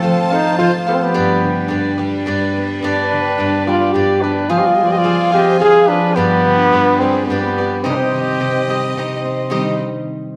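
Mexican folk in the mariachi tradition, this dramatic, passionate passage moves in a straight three-beat metre and is cut from a longer piece. A French horn with a straight mute carries the melody up front, its brilliant, nasal tone shaded with vibrato and a smooth top in a classical solo style, while a clear, punchy trumpet sings a second line from a more distant, roomy position. Beneath them, a mellow cavaquinho picks crisp acoustic accompaniment, and a concert harp, also up front, spills ringing fingerpicked arpeggios in its lower register. A lush symphonic violin section holds focused, bowed sustained chords with vibrato behind the soloists. The harmony moves from F to G, darkens to F minor, returns to G and settles on C minor near 7.8 seconds, all bathed in the generous reverb of a recital hall.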